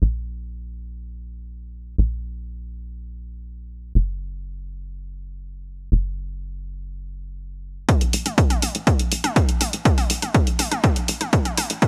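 A bright, 1980s-style digital sheen with a digital ambience frames this hypnotic, dark melodic techno excerpt in a straight 4/4. A tight sequencer bass, sawtooth and square in tone with a fast-attack filter pluck and sidechain pumping, drives alone from the start until 7.9 seconds. At that point a punchy, overdriven electronic kick and a layered deep house kit of hi-hat and toms arrive up front with a drum fill that builds through to the cut at 11.9 seconds.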